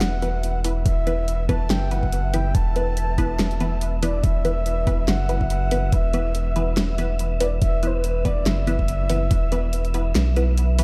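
A half-time deep dubstep groove at 142 BPM in 4/4 rolls along with a 55% swing on the sixteenths, its dubstep drum kit pairing a huge snare and handclaps with bright hi-hats in a small room ambience, while an electronic kick drum with a knocking, tape-warm punch joins at 0.9 seconds and drops out at 9.4 seconds. Underneath, a soft dub sub bass sits deep, round and up front, sustaining low between E1 and B1. From 0.2 seconds a filtered dub chord stab adds muted, resonant, wave-folded plucks with a fast attack and short decay, colored by phaser and dub echo. Above it all, a breathy, flute-like synth lead carries the melody between B4 and A5, its soft attack and vibrato thickened by chorus and trailed by dub echo. A wind-like tuned noise texture holds an airy E5 in the background with a slow attack, long release and built-in reverb, deepening the cavernous, brooding mood of this short excerpt cut from a longer piece.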